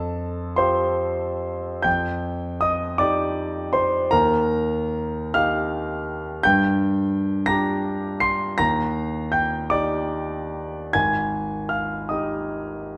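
In a 6/8 with free rubato, the pulse drifts between 45 and 58 dotted-quarter beats per minute, giving this 13-second cut from a longer impressionist solo piano piece a mysterious, wistful air. A single concert grand carries everything, sounding clear, polished and intimate, with deep bass, long sustain and the mechanical noise of its action audible up front in the sound. The harmony moves through open, colored chords, from Fadd9 to Fsus2 and Ebadd9, then darkens to Gm before settling on Ebmaj7 and finally a bare Ab5 near 10.9 seconds. The playing spans nearly the full keyboard, from Ab1 up to C7, and the instrument is tuned slightly below standard pitch at A4 = 439 Hz. A recital hall's reverb, with a decay of about 1.4 seconds, surrounds the piano in a wet, resonant space that lets each chord hang in the air.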